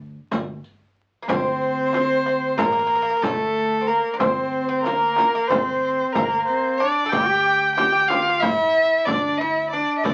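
A clear, smooth violin with even vibrato leads up front in this melancholic, soulful Turkish makam ensemble excerpt in D makam ussak, moving in 9/8 at 185 BPM in eighths, joined at 1.3 seconds by a sul tasto cello with a nasal, floating tone and just before that by a metallic, double-strung bouzouki. Underneath, a woody pizzicato upright bass opens the fragment alone before a deep, saturated frame drum enters at 0.3 seconds with a clay-shelled darbuka and a dark-jingled riq sitting in the background. Moderate studio reverb and the crackle of a very old 78 rpm record give the whole a dusty, antique veil.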